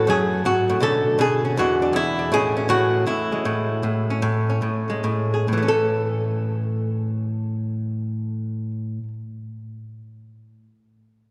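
Playful and swinging, this brief solo jazz excerpt in A major moves at a brisk 137-161 BPM with a swung 4/4 feel, easing into a slowdown from 2.3 to 5.5 seconds. A lone hollow-body archtop guitar, electric, dark and clean with a compressed, picked tone, sits up front, spanning E2 to A4 as it moves through F#m, Bm9 and E9 to Amaj7 before settling on A at 5.5 seconds. The sound blooms in a cavernous church acoustic, its long reverb tail hanging around every note.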